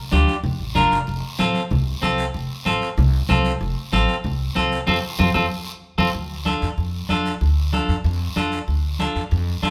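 Latin cumbia in D minor at 189 BPM, passionate and fiery, cut from a longer piece, with a clean picked electric guitar and a woody, thumpy pizzicato upright bass up front, soft-handed thick-skinned congas and a raspy guiro underneath, all in a moderate large-studio reverb, as the Bb-to-F harmony moves toward a band accent at 4.9 seconds before the music shifts to D minor at 6.1 seconds.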